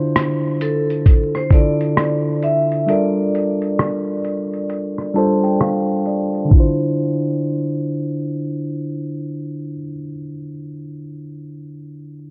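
A mellow, clean tine electric piano opens this hazy, reflective, swung lo-fi hip hop fragment on a Dm9 chord, soon joined by a muffled, pitched-down sampler-style kit of thumpy kick, hi-hat and rim click that stops at 6.8 seconds, while a bright, ringing vibraphone with slow motor vibrato carries a short melody until 5.6 seconds, through a filter sweep, a break and an electric piano fill, before the piano carries on alone to 12.3 seconds in a dark production dusted with vinyl crackle and light digital ambience.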